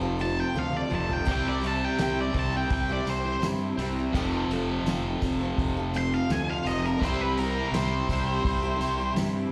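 This short excerpt sounds like a live club gig heard through the venue's PA, with light room reverb around a dense, driving classic rock band in F major at 84 BPM in a straight 4/4. Up front, an octave-fuzz lead guitar plays a solo through most of the clip, its distorted tone carrying plate reverb and slapback echo, while a round, overdriven fuzz bass played with the fingers holds down the low end. Two rhythm guitars share a riff beneath: a bright, distorted electric guitar and a crunchier overdriven one set further back with its own slapback echo. A picked dreadnought acoustic guitar adds full-bodied accompaniment in the background, and a very quiet vintage string machine sustains lush, phased chords with an ensemble chorus shimmer. The cloth-damped drum kit sounds dry and thuddy, with a fat snare and tight kick, opening with a fill between 0.5 and 1.3 seconds, after which a jingly tambourine joins at 1.3 seconds as the chords move between F and C, giving the whole passage a sunny, forward-pushing mood.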